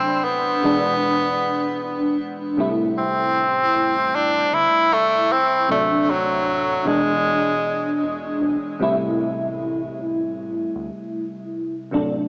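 Set in a straight, unhurried 4/4, this melancholic and woozy vaporwave fragment is cut from a longer piece and drifts through a cycle of D7, E7 and Am7 chords. An edgy tenor saxophone carries the solo melody up front in a punchy pop style with light vibrato, its tone roughened by vintage 12-bit sampler grit and trailed by tape echo, before it falls silent at 8.4 s. Beneath it, a mellow FM electric piano sits up front with a soft, round, decaying sound and a noise layer, thickened by ensemble chorus and analog delay. Deep in the background, a chorused synth bass blends pulse and sawtooth waves with pulse-width modulation and a moving notch, giving it a retro, glossy, evolving character warmed by tube saturation. A huge ambient reverb with a long tail and a cassette, small-speaker coloring wrap the whole track in a hazy, lo-fi fog, and after 8.8 s the piece moves into a new section that settles back on Am7.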